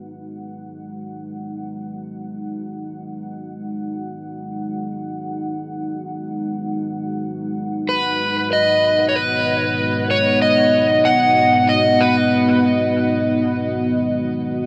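A deep, warbling, detuned pad fades in on a sustained G#m7 chord with chorus, opening this spacious, hazy ambient dub excerpt in free time and G# minor, before an overdriven electric slide guitar carries a melody with dub echo from 7.9 to 12.6 seconds, all soaked in a huge, dreamy reverb.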